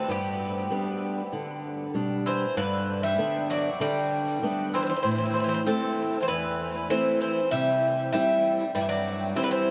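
Soaked in a vast, dreamy reverb with vinyl crackle, this hopeful Greek folk excerpt at 97 BPM in G major sets a bright, metallic bouzouki melody up front over a second, mellower bouzouki line low in the mix and an up-front fingerpicked steel-string acoustic guitar with audible finger squeaks, both bouzoukis trailing a diffuse ambient delay as the chords move from G to Am at 5.1 seconds and C at 7.5 seconds.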